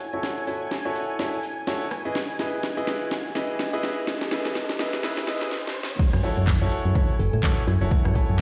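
Swung at 125 BPM in 4/4, this bittersweet, soulful piano house excerpt in F# dorian opens with a build-up in which a brilliant, up-front concert grand piano riff, filtered and touched with tape echo and sidechain pumping, rides over a silky analog string pad, a cracking house drum kit with metallic hats and handclaps, and a faint riser, until the drop at 6.0 s brings in an overdriven, punchy kick and a round, dark FM bass, with a woody, band-limited kalimba melody surfacing at 7.2 s within a stone-room reverb.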